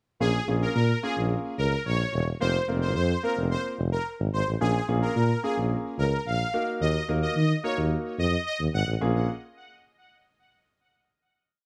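From 0.2 s, a tuba with light vibrato carries an up-front, syncopated dance-pop bass line with chromatic approach notes, while a concert grand piano with deep bass and a natural tone pushes close-voiced chords under plate reverb. Over them, a smooth, detuned unison supersaw with a soft attack sustains a repeated instrumental hook, coloured by phaser and plate reverb, giving this short, complete dance-pop piece an energetic, confident mood in a lightly reverberant space. The supersaw drops out at 8.8 s, and the piano and tuba settle onto a final chord at 9.0 s.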